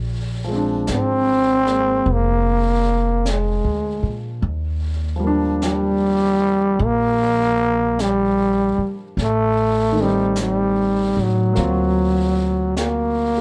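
A dark production with light reverb frames this tender, romantic jazz ballad in Eb major, a brief passage cut from a longer piece, moving at a slow 51 BPM with a swung feel. A woody, thumpy pizzicato upright bass opens at 0.0 seconds, a warm grand piano sits in the background from 0.4 seconds, and at 0.9 seconds a close-miked trombone takes the solo melody up front, breathy and raspy with growls, vibrato and scooped notes, wet with plate reverb. A distant, roomy brush kit with a high-tuned snare and hi-hat enters alongside it, while the chords pass from Bb7 to Ebmaj9, Adim and D7alt.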